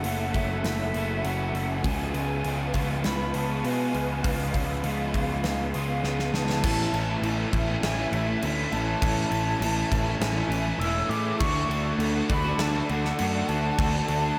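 Soaked in a lush hall reverb, this hazy, dreamy shoegaze and dream pop excerpt at 100 BPM rides on an up-front fuzz bass and a gated 80s drum kit with a punchy kick and bright cymbals, while an overdriven semi-hollow guitar riff sits in the background beside a raw garage guitar riff with reverse reverb, a very quiet lo-fi guitar through a small old amp picks dark arpeggios, a breathy jazz flute carries the unsteady, vibrato-laden melody through a delay, a silky string machine with phaser holds chords until 6.6 s and returns at 11.4 s, and a very quiet double-tracked second garage guitar joins at 6.6 s as the harmony moves from F#m7 and C#7 to A and Dmaj7.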